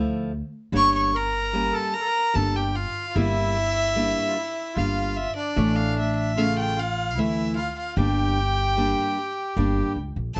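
A clear, floating violin carries the melody up front from 0.8 seconds, its soft attack and airy bow giving a pure, soulful line to this festive klezmer excerpt in G dorian sharp 4, moving at 75 BPM in a straight 3/4. A reedy, single-reed accordion with dry tuning plays a second line just beneath it from 0.7 seconds. A small, fingerpicked nylon-string guitar and a woody, thumpy pizzicato upright bass, also up front, lay down the accompaniment from the start, while moderate studio reverb frames the parts as the chords move from D minor through G minor to A and back to G minor.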